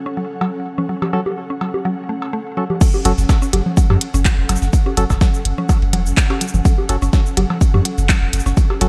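Minimal techno with a sparse, quirky mood, this excerpt opens on an ethereal pad with tremolo and pumping, a very quiet pulsing gated texture, a woody mallet-like pluck riff with delay, overdriven cowbell, congas and bongos, hollow organ stabs and a filter sweep, then drops at 2.8 s into an up-front punchy kick, clicky overdriven hats with claps, crash and shaker, a gritty sampler-style kit with ride and snare in the background, and a deep sine sub bass with tube saturation entering at 3.1 s, all under bright 1980s-style digital production with light reverb.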